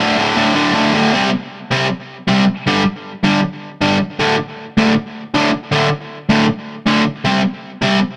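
A bright, double-tracked distorted electric guitar plays alone and up front in this rebellious, energetic punk excerpt, picked at 157 BPM in a straight 4/4 and colored by overdrive and tape echo as it moves through D5, C5, G5, D5 and C5 power chords. At 1.1 seconds the feel drops into half time, and the guitar stays between D2 and C4 until it stops at 8.0 seconds. The sound is a rough rehearsal-room recording with tube saturation and moderate studio ambience.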